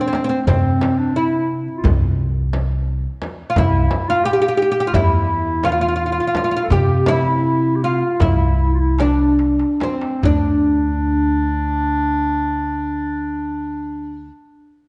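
Melancholic and hypnotic, this Turkish makam ensemble piece moves in a straight 9/8 and is cut from a longer performance. A mellow, woody fretless oud carries the melody up front, its plectrum-plucked double strings sounding deep, while a warm classical-style clarinet sits close beside it on a second line. A thumpy pizzicato upright bass with steel strings joins at 0.5 seconds, and in the background a crisp metal-shell darbuka plays alongside a large frame drum struck with hard hands. The pace slows from 4.2 seconds, a drum fill closes the opening section, and the two drums stop at 10.6 seconds, leaving oud, clarinet and bass for the final passage. A moderate scoring-stage reverb and a dark production lend the ensemble a shadowed, resonant air.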